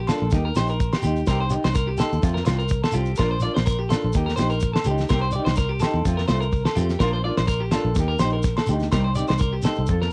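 A swung sixteenth-note groove at 125 BPM in 4/4 drives this sunny, danceable highlife guitar band passage, cut from a longer piece. Up front, a damped 70s drum kit pairs a fat snare with a tight kick, and a dark, round, foam-muted fingered electric bass sits just as forward beneath it. A twangy, picked clean electric guitar plays arpeggios in a high register, colored by cassette tape and tape echo, while a fingerpicked nylon-string guitar adds classical-toned accompaniment through the middle range. Ringing agogo bells sit in the background, and a grainy, saturated shekere fills in the percussion. The harmony cycles steadily through Eb, Cm, F and Bb across the roughly 10-second span. A light reverb surrounds the whole band, captured as a home recording on cassette.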